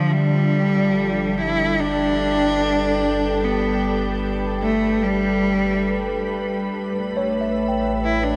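In a straight 4/4, this serene, melancholic ambient fragment sets a clear, focused bowed cello melody with vibrato and tape echo up front over a pure, full-bodied organ-like pad with ensemble chorus and a deep, round analog bass, the harmony moving from G7 to A7 as a clean tine electric piano adds tape-echoed arpeggios at 7.2 s, inside a huge, dark reverberant space.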